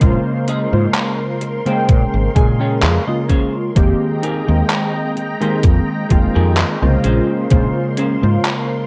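A woozy, melancholic vaporwave fragment opens at once on warbling, detuned lo-fi synth keys with chorus and delay, silky string-machine chords carrying vintage sampler grit, a chorused and filtered semi-hollow guitar riff, a round, woody fretless bass up front, a thumpy overdriven electronic kick, and a detuned 8-bit drum machine's handclaps and hi-hat in gated reverb, while a clean guitar fill runs from 1.9 to 3.8 seconds as Bbm9 gives way to Fm11, the mix set in light reverb with a cassette-tape character.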